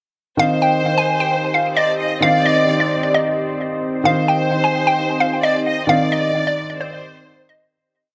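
Eerie and menacing, this short trap piece at 131 BPM in C minor moves with a half-time feel, built as a breakdown over a Cmadd9 chord, with a hollow, bouncy square pluck carrying a looping melody through chorus and analog delay. A warm, vibrato-laden violin section adds a sparse bowed counter-melody while a dark concert grand holds open-voiced chords with deep bass, both up front and repeated like sampled loops. From 1.2 seconds a glassy FM pad enters with slow-attack sustained chords, and the echo-heavy mix, set in spring reverb and small room ambience, fades out from 5.9 seconds.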